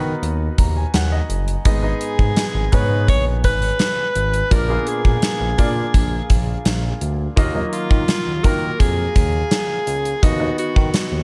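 1980s-style pop with a nostalgic yet urgent mood, cut from a longer piece and heard in a small room. A clear baby grand piano plays a fill from 0.2 s over a smooth, nasal synth bass and an up-front gated 80s drum kit with a tight kick and a medium-tuned snare. From 1.7 s an alto saxophone carries the solo melody with light vibrato, scooped notes and delay, as the chords move through Abm, Bb and Ebmadd9 before returning to B/D#.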